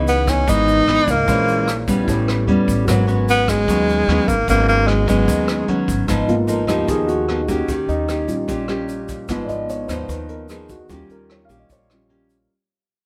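Lightly reverberant, this melancholic, smooth bossa nova excerpt at 150 BPM in G# minor puts a soft-attack, vibrato-rich tenor saxophone up front over a full-bodied, fingerpicked nylon-string guitar, a woody, thumpy pizzicato upright bass, a mellow grand piano with a dark, deep low end, a vintage brush kit with a punchy kick and rim clicks, and a grainy tube shaker in the background, until the saxophone stops at 5.8 seconds and the piano takes a solo from 6.1 seconds as the harmony shifts to G# dorian and the music fades out.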